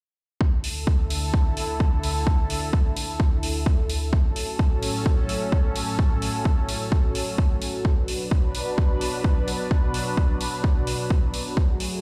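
Played through a big sound system in a bare stone room, this euphoric, uplifting fragment of festival progressive house at 129 BPM sets a lush, detuned sawtooth unison pad, thick with chorus, phaser and sidechain pumping, sustaining Dsus2, A6 and Bm chords from 0.4 seconds over a punchy, overdriven, up-front kick and bright, gritty hi-hats.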